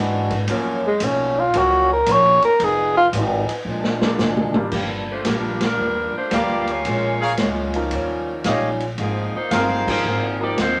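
A swung 4/4 groove at 113 BPM drives this brassy, dramatic big band swing, with a natural-sounding drum kit in a big room, boomy kick and all, and a growly, woody pizzicato upright bass, while a picked parlour acoustic guitar and a brilliant grand piano fill in the harmony. From 0.9 s a breathy, whispered tenor saxophone takes an intimate solo with scooped notes and vibrato, and the tune then settles into G minor as a tight, mellow saxophone section carries the melody from 4.8 s. A clear trumpet section joins with soft-attack stabs from 6.3 s, and the band hits accents over the moderate studio ambience in this short excerpt.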